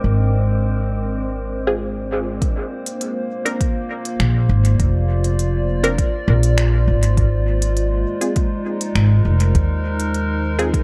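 Ambient dub at 101 BPM in Bb mixolydian, hazy and peaceful, built on a warbling, nostalgic tape-like pad with chorus and reverb, a woody, thumpy pizzicato upright bass up front, and a faint, airy wind-like noise texture heard until 2.4 seconds. A muted, detuned dub chord stab with phaser, dub echo and a filter sweep enters at 1.7 seconds. At 2.4 seconds a deep, up-front electronic kick and a smooth organic electronic kit of finger snaps and hi-hat with dub echo arrive, as the harmony moves from Ab6 to Bbadd9 and back to Ab6, all within a dark, warm production.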